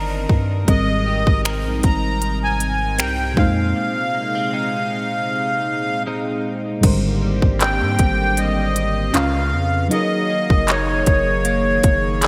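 A reedy, sweet accordion carries the melody up front from 0.7 seconds, its light tremolo tuning giving a gentle shimmer to this smooth, romantic contemporary R&B excerpt at 78 BPM in 4/4 with a slight swing on the sixteenths. It opens over a round, warbling FM electric piano with a vintage noise layer and chorus, which plays a short fill before settling into accompaniment, while a floating, bowed string section holds soft sul tasto chords that pump against the sidechain. A clean, direct-recorded electric guitar picks compressed arpeggios with analog chorus in the background, and a deep, sine-like 808-style bass sustains long, decaying notes underneath. The electronic trap kit enters at 0.3 seconds with a hard-clipped kick, crisp hats, finger snaps, handclaps and crash cymbal, sitting up front in gated reverb, and a break runs from 3.8 to 6.8 seconds. Lush hall reverb and a bright 1980s-style digital sheen frame harmonies moving from Cm9/G through Abmaj9 and Bb9sus4 to Abmaj9#11, Db7 and Gb69.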